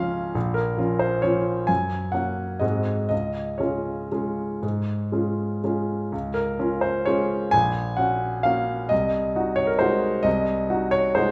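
Classical piano waltz in Db major, graceful and elegant, taken from a longer piece, with a clear, intimate grand piano playing solo in a rubato 3/4 at 116-140 BPM, its short sustain and audible action noise sitting up front in a wet recital hall reverb as the harmony moves through Bbm, Gb and Ab7 to Db across two statements of the same section.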